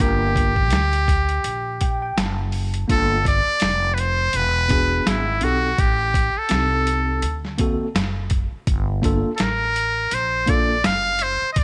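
A buzzy, thin trumpet with a metal mute carries the melody up front throughout this mellow, cool jazz-hop excerpt, backed by a worn, slightly out-of-tune tine electric piano with light overdrive that adds a fill from 1.4 to 2.9 seconds and stops at 10.8 seconds. Underneath, a woody, growly pizzicato upright bass and a gritty, pitched-down boom bap drum kit with a thumpy kick and medium-tuned snare give a swung groove. Light studio reverb frames the chords as they move from Gm9 through E7, Am7b5 and D7b13 before returning to Gm9.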